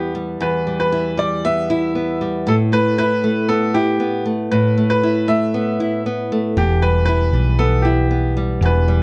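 A bright upright piano carries the melody in this tender, reflective acoustic pop excerpt, its brilliant, woody tone sitting up front in the G4 to E5 range. Beneath it, a small-sounding nylon-string guitar is fingerpicked throughout, offering a warm accompaniment in a straight 4/4 at 117 BPM. The harmony moves from E minor to Asus2 at 2.5 seconds before returning to E minor at 6.6 seconds. At that same moment a hollow-body short-scale electric bass enters, played with the fingers, adding a dark, round and punchy amped low end that sits up front. Close, detailed microphones and a light touch of reverb keep the sound clear and present.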